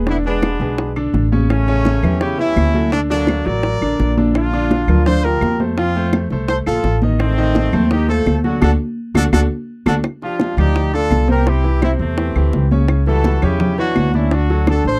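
A punchy, tight horn section carries the melody up front over a thumpy, gut-strung pizzicato upright bass, bright concert grand piano, round low-tuned bongos, ringing high-tuned congas and woody claves in this passionate, danceable salsa cut with a dry, close 1970s studio sound, where a band accent from 8.6 seconds and a drum fill from 9.0 seconds lead into a new section at 10.0 seconds.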